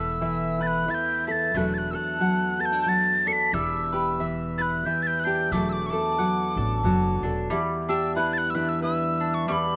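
Acoustic folk for a small band in a swung 3/4 at 91 BPM in E minor, this intimate, wistful excerpt is led by a breathy metal tin whistle with vibrato, a chiffy crisp attack and slapback echo, set up front alongside a warm, deep classical nylon-string guitar that is fingerpicked with audible finger squeaks. A mellow mandolin picks round, double-string arpeggios, while a woody, thumpy pizzicato upright bass on steel strings plays until 7.5 s, leaving the other three to carry on to 9.8 s. The chords move from Asus2/E through Bm7/E and Em7 to E9sus4 before returning to Em7, all captured outdoors with a dry sound and little reverb.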